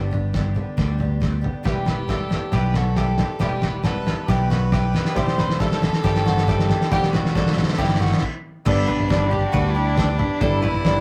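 A cloth-damped, thuddy drum kit sits up front in this hopeful, anthemic indie folk clip, cut from a longer piece. Its fat snare, tight kick, toms and dark crash cymbal sound muffled and gritty as a long fill drives the build-up at 137 BPM in a straight 4/4. Beneath it, a round, amped electric bass and a shimmering, octave-doubled twelve-string acoustic guitar run throughout in G major, while a full-bodied fingerpicked steel-string guitar appears only briefly in the background at the start. Around 1.7 seconds the arrangement fills out: a woody mandolin plays arpeggios, a nasal, boxy fiddle adds a second line with light vibrato, and an upright piano sits in the background as the chords move from G to Em to C/E. After a short stop, the music lands back on G at 8.7 seconds, where a rich, distant bowed cello takes the melody and a very quiet, close-miked brass ensemble holds sustained chords. 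The rough rehearsal-room recording carries a moderate booth ambience.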